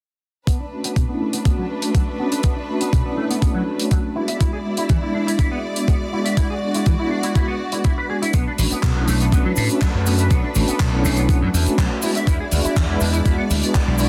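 A dense, heavily limited modern mix with light reverb and a small-room ambience frames this sunny, groovy nu-disco cut from a longer piece, moving at 122 BPM in a straight 4/4 over a Bm7 to E7 progression. From 0.5 seconds, a thumpy, sampler-style electronic kick sits up front, re-recorded in a large room, alongside a dry, damped 70s drum kit with a rolled-off top carrying handclaps and hi-hat. A dark, clean, picked electric guitar riff runs through an envelope filter with ensemble chorus, low-pass filtering, tape echo and a filter sweep. Lush, close studio strings hold bowed chords with vibrato and sidechain pumping, while a smooth, detuned sawtooth pad with a soft attack and long release adds chorus, tape echo and its own filter sweep. At 8.3 seconds a bright, punchy slap bass arrives up front, joined by a cabasa tucked in the background.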